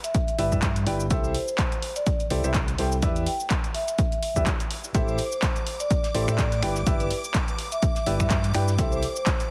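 A clear, present grand piano riff with pumping sidechain and digital delay drives this energetic, soulful piano house excerpt at 125 BPM with a light swing, over a punchy, up-front electronic kick and an analog drum machine of cabasa, finger snaps, handclaps and hi-hat re-recorded in a large room, while a dark, round, overdriven fingered electric bass with tube saturation pumps beneath, a mellow vibraphone played with soft mallets rings out a delayed melody with slow motor vibrato, and at 4.9 seconds shimmering vintage string-machine violins with ensemble chorus and a very quiet, dry, damped 70s kit of hi-hat and snare join across a G6, C6, Em7 and Am7 progression, all in a heavily compressed, radio-style mix with little reverb.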